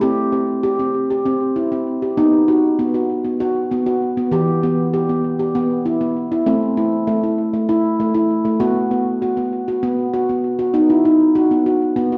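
Meditative and hypnotic, this world-music fragment cut from a longer piece sets a solo handpan in 7/8 at 196 BPM in B phrygian dominant, its bright, ringing nitrided-steel tones and sharp finger strokes sitting up front through tape echo as the chords move from C5 through B, Em, Am and B5 back to B, all heard through a wet recital-hall reverb and the warbling pitch drift of worn old cassette tape.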